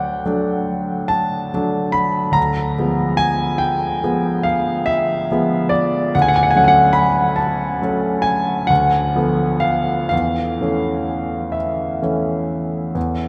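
A clear concert grand piano carries this brief romantic nocturne alone, its polished tone sitting up front with audible action noise and a deep bass that reaches down to D2 while the melody rises as high as B5. The mood is dreamy and nostalgic, unfolding in 9/8 with a supple rubato that lets each phrase breathe. The piece opens on a D chord, darkens into a diminished color at 2.4 seconds, then settles into a D major seventh at 6.1 seconds before passing through a half-diminished shade over D and resting on an A chord over E at 10.1 seconds. For all the intimacy of the close, present piano sound, it rings out in a vast cathedral whose long, wet reverb lets every chord hang in the air. This short passage, cut from a longer work, lasts just over 13 seconds.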